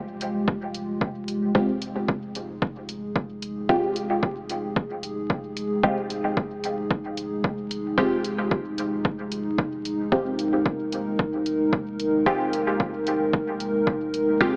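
A punchy, overdriven electronic kick and a dry, gritty hi-hat drive a 112 BPM 4/4 pulse with swung 16ths in this hypnotic, nocturnal dub techno excerpt in F minor, where a moody, detuned analog pad with chorus sustains an Fmadd9 chord up front, a clean sine sub bass sits deep in the background, and from 1.5 s a muted, phased sawtooth chord stab with dub echo joins up front, the pad, bass and stabs all pumping to the sidechain inside a 2.4-second echo-chamber reverb dusted with vinyl crackle and a thin AM radio tone.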